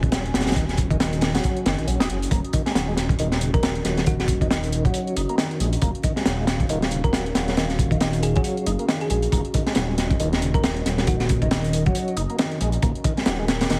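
A swung breakbeat groove at 137 BPM in 4/4, with a 58% shuffle on the sixteenths, drives this gritty, funky fragment in Eb minor, cut from a longer piece and resting on a single Ebm7 chord. Up front, a crunchy, saturated acoustic breakbeat kit pairs a tight kick with a high-tuned snare and hi-hat under a rolled-off top, while a tape-warm electronic hi-hat sits in the background. Beneath it, a deep, rumbling detuned saw bass beats and growls between Eb1 and Bb1, and a moody analog pad holds sustained chords with chorus and sidechain pumping. A fat, lightly overdriven tonewheel organ enters at 0.1 seconds with a percussive riff, its key click and second-harmonic percussion turned through chorus vibrato, a slow rotary speaker, a low-pass filter and tape echo. A round, tine-like synth pluck resembling a thumb piano adds brief melodic phrases from 3.5 and 7.0 seconds, coloured by chorus, a small-speaker tone and tape echo. 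The mix has light reverb and a heavily compressed, radio-like finish dusted with vinyl crackle.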